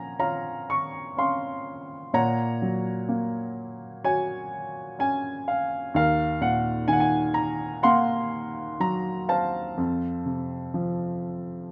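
The rhythm moves in a slow, rubato 4/4 at about 62 BPM, the pulse stretching and relaxing freely in this short classical passage for solo piano. A baby grand carries the whole piece alone, its tone natural and warm, placed up front and close to the listener, spanning a range from Eb2 up to Db6. The mood is reflective and dark, lyrical in character, with a light reverb giving the instrument a gentle sense of space. The harmony opens on Bbm, passes through Gbadd9/Bb at 2.1 seconds and Ebmadd9 at 6.0 seconds, then arrives on F at 9.8 seconds. Lasting 11.7 seconds, the recording is cut from a longer piece and stops on that final chord.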